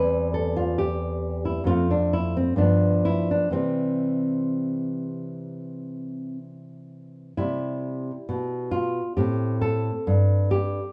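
A lone nylon-string guitar opens on a C/E chord, its thumb-plucked fresh strings sounding warm and up front in this introspective, flowing excerpt of a baroque-style classical dance in C major, played with rubato at roughly 61-68 BPM in 4/4. The harmony moves through F and G7 to settle on C by 3.5 seconds, and a second section beginning at 7.4 seconds turns toward A minor at 9.2 seconds. A wet booth ambience surrounds the guitar, which is tuned slightly high to A4 = 443 Hz.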